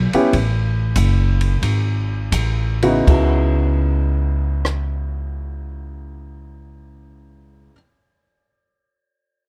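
A woody, up-front pizzicato upright bass opens this moody, swinging jazz excerpt in C# minor at 76-100 BPM, with a baby grand piano comping close by and a dry cocktail drum kit of dark cymbals, punchy kick, hi-hat and rim clicks. The music slows through the first 3.1 seconds and moves from F#m and G#5 to a C#m11, and the drums drop out at 4.9 seconds, leaving bass and piano in a dark, intimate, nearly reverb-free room.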